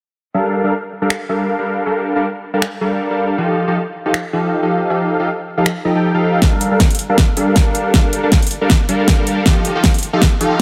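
Bathed in a lush digital hall reverb, this dreamy future bass excerpt rides a half-time feel as huge, detuned supersaw chords pump with sidechain and tape echo over a pop drum kit of finger snaps, warm hats and a fat snare, until a punchy electronic kick joins at 6.4 seconds for a build-up with a drum fill and a filter sweep on the synth.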